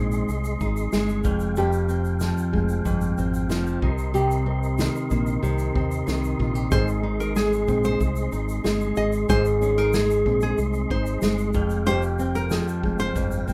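An easy-going, carefree acoustic pop passage at 93 BPM in Ab major opens with an up-front, fingerpicked nylon-string guitar, its dark classical tone marked by finger squeak, over a round, punchy fingered electric bass, a mellow tonewheel organ with key click, chorus vibrato and fast rotary speaker sustaining chords high above, and a distant, roomy unplugged kit of punchy kick, medium-tuned snare played with bundle sticks and shaker, before a second full-bodied fingerpicked nylon-string guitar adds arpeggios from 6.7 seconds, all in light reverb as Ab, Fmadd9 and Cm7 chords turn.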